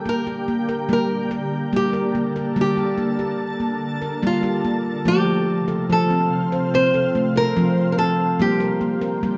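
A ringing nitrided-steel handpan, played with the fingertips and placed up front, spins arpeggios through this gentle, hypnotic world-meditative passage at 72 BPM in G minor, joined by a fingerpicked nylon-string guitar melody with fresh strings and a shimmering, ethereal ambient pad of detuned, chorused sustained chords over a Gm to F to Gm progression, all in a wet echo-chamber reverb with a 1.8-second decay, cut from a longer piece.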